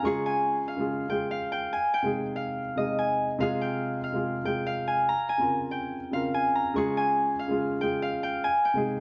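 Hip hop excerpt at 143 BPM with a half-time feel, ominous and dark, where a ringing, fingerpicked Celtic harp carries the melody up front over a mellow, intimate baby grand piano with short sustain and audible action noise, both muffled by a low-pass filter in light studio reverb as the chords move from Db through Ab, Fm and Bbmadd9 across 9.0 seconds.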